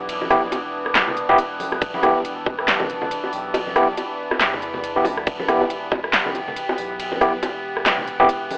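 A half-time deep dubstep groove with a 16th-note swing sets a meditative, brooding tone in this short cut from a longer piece, resting on a single E minor chord throughout. A deep house kit with a punchy snare, smooth hi-hats, handclaps, ride cymbal and rim click sits up front, joined from 0.2 seconds by soft-handed bongos and congas that carry a dub echo, while an electronic kick drum appears only briefly, from 1.8 to 2.6 seconds and again from 5.3 to 6.0 seconds. Underneath, a round, tube-saturated sub bass hangs in the background, and a resonant drone of sawtooth and sine tones sustains chords with moving overtones, chorus and its own reverb. The most prominent voice is a barky, overdriven tine electric piano playing stabs through a combo amp, shimmering with fast tremolo and dub echo. The whole recording has a gritty, hardware-driven character with transformer saturation, a telephone-like tone and light reverb.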